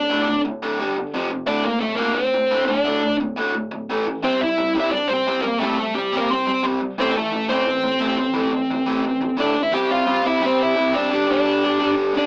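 Urgent and angry, this straight-ahead punk excerpt pairs a dark, smooth overdriven lead guitar carrying the melody with a bright, double-tracked overdriven rhythm guitar playing a picked riff, both up front in a rough rehearsal-room sound with a small-speaker quality and a short, wet booth ambience, shifting into a new section at 9.7 seconds.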